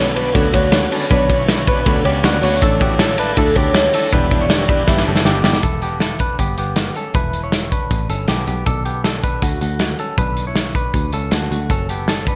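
A warbling, detuned lead carries the melody through chorus and tape echo until 5.4 seconds in this bittersweet, restless excerpt of jangly indie pop at 158 BPM in E dorian, over very quiet fingerpicked, full-bodied acoustic guitar, a buzzy overdriven combo organ and faint phased organ-like strings that drop out at 5.6 seconds after a drum fill, leaving twangy clean electric guitar arpeggios with spring reverb and tape echo, a round, foam-muted picked bass and a gritty, muffled, up-front drum kit to push on in a dry room.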